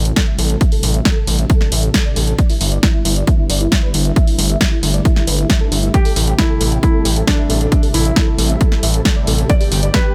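A straight 4/4 pulse at 135 BPM drives this emotional, euphoric uplifting trance passage in A minor, cut from a longer piece, where an overdriven electronic kick sits up front beside a punchy analog drum machine's hi-hat and tape-warm snare, a gritty oscillator-sync synth bass pumps with sidechain, and a silky, chorused analog string pad carries the Am7, Em7/G and G chords under a filter sweep while a huge detuned supersaw lead sings its melody from the background through a low-pass filter and tape echo, joined at 5.9 s by a soft, intimate felt-muted upright piano line with its own tape echo, all in a dry sound.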